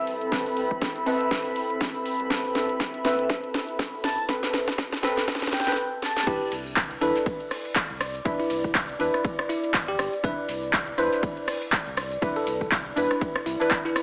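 Filtered to a thin AM-radio tone inside a moderate plate reverb, this sunny, relaxed deep house excerpt builds through a filter sweep as a dreamy, detuned lead with vibrato and portamento floats over a smooth analog pad, pumping chords in mellow, dark stabs with delay, a round analog bass sitting in the background, a nostalgic, lo-fi tape-like pad and an overdriven house kit with a cracking snare and punchy electronic kick, before the drop at 6.3 seconds hands the melody to a bell-like tine electric piano with sampler grit and tape echo, joined by a dry, damped 70s drum kit.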